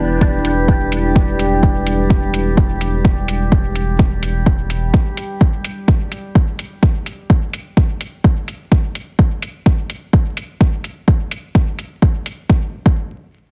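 Dub techno with a meditative, deep mood, this short cut from a longer piece settles on a single sustained chord with a light swing. A moody, detuned analog pad holds chords with a slow attack and chorus, pumping against the kick until 8.7 seconds. Beneath it, a soft, round dub sub bass sits up front with tube saturation, while a glassy texture of drifting overtones floats on chorus and its own reverb; both bass and texture drop out at 4.9 seconds. An overdriven electronic kick and metallic hi-hat stay prominent throughout, sounding layered and re-recorded in a large room. The whole track carries a heavily compressed radio quality, with vinyl crackle and a light digital ambience, and the chord falls away near the close so the drums finish alone.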